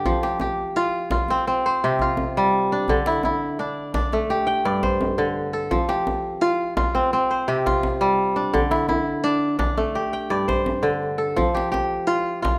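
A steady, straight 4/4 pulse at 85 BPM carries this hypnotic, flowing excerpt of West African string and xylophone music in F major, tuned slightly low to A4 = 438 Hz. The djembe provides the percussion from 0.1 seconds, its tone deep, compressed and saturated, sitting lower in the mix than the strings. The kora leads with ringing, fingerpicked arpeggios across a range from G2 to G5, sounding bright and crisp up front. The harmony cycles through F5, C5, D5 and G5 before returning to F, then repeats the same loop, which adds to the trance-like feel. A moderate recital hall reverb with a 1.6-second decay gives the acoustic performance a natural sense of space until it is cut off at 12.6 seconds.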